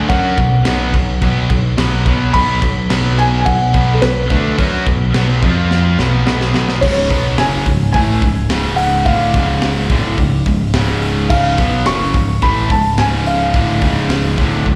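Relentless and aggressive, this heavy metal excerpt drives at 107 BPM in C# phrygian dominant, with a soft, felt-muted upright piano carrying the mellow, intimate melody through slapback and tape echo over three bright, picked distorted guitar riffs: one compressed and very quiet, one high-gain, and one double-tracked, the latter two sitting in the background with slapback echo. A growly, direct picked bass sits up front beside a tight metal drum kit with a high-tuned snare and a rolled-off top, which enters at 0.1 seconds and plays a fill from 5.7 to 6.8 seconds before the music moves into a new section. The sound is of a live gig heard through the venue's PA, with the feel of a recital hall.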